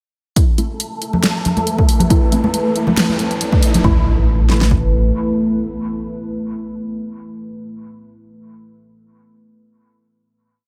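Heavy and cavernous, this short deep dubstep piece moves at a half-time, lightly swung gait through a dreamy mix soaked in hall reverb. Punchy, overdriven electronic drums sit up front with a fat snare, while a second kit layer adds closed and half-open hats, and ringing high-tuned congas played with hard hands send echoes into the space. A soft, round sub bass holds long dark notes beneath sparse, muted chord stabs that carry phaser, a cassette-tape haze and dub echo, one shape moved in parallel as a filter sweeps across them during the build. From 0.7 seconds a breathy, wind-like noise texture holds a high note, and from 1.7 seconds a deep, moody detuned pad with chorus swells in up front, while a riser climbs from 1.9 seconds. At 3.8 seconds the build gives way to a final sustained chord, with the pad, stabs and transition effects ringing out to the end.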